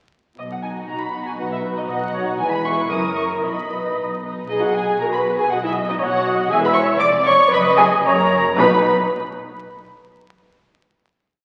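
In a straight 2/4 at 118 BPM, this short, graceful and spirited classical-period movement for string orchestra in B major puts a muted violin section up front on the vibrato-laden tune from 0.4 seconds, while a second violin section doubles it at the octave in soft syncopated chords and violas add a close counter-melody and sustained chords from 0.9 seconds, over cellos playing a sustained bass on the beats and double basses doubling that line, all dark and veiled under con sordino in a scoring-stage reverb and heard through the crackle of a very old 78 rpm record until a final B chord at 8.6 seconds.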